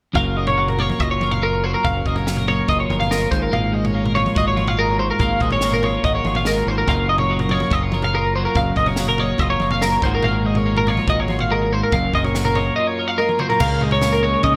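Bright and wistful, this short math rock and midwest emo passage in Gb major moves at 143 BPM in a straight 4/4, where a warm, clean twelve-string electric guitar plays arpeggios through lush chorus and digital delay over a second, twangy and up-front twelve-string guitar's chordal accompaniment, all moving through Gbmaj7 and Ab7sus2 before landing on Db6, while an overdriven, growling fingered bass and a compact cocktail drum kit with dark cymbals, a high-tuned snare, a punchy kick and gated reverb drive the groove up to a drum fill at 13.2 seconds, set in a plate reverb and small-room ambience with 1980s-style digital production.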